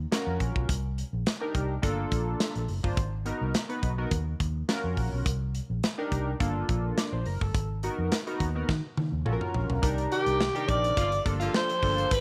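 A raspy, growling alto saxophone with slapback echo takes the melody at 10.1 seconds in this slick, danceable early-eighties boogie funk, cut from a longer piece in C dorian at 105 BPM. Beneath it, a dark, foam-muted fingered bass and a glossy, chorused polysynth move through minor-ninth chords over an up-front acoustic drum kit with a tight kick, which plays a fill just before a very quiet, swirling phased string machine enters at 9.8 seconds. A clear, tight horn section adds a brief second line in the background, and light studio reverb gives the mix a touch of space.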